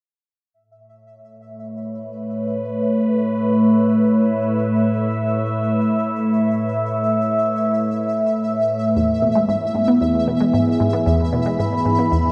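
A bright, pulsing gated texture on a high E opens this cosmic, expansive fragment of sequencer-driven ambient space music at 114 BPM in 4/4, joined at 1.7 s by an up-front, warbling, detuned wavetable pad with phaser and a filter sweep, sustaining an Aadd9 chord, before a squelchy, resonant blip pluck with phaser and delay enters at 9.0 s on a low riff as the harmony moves to E, all set in a huge, dark reverb.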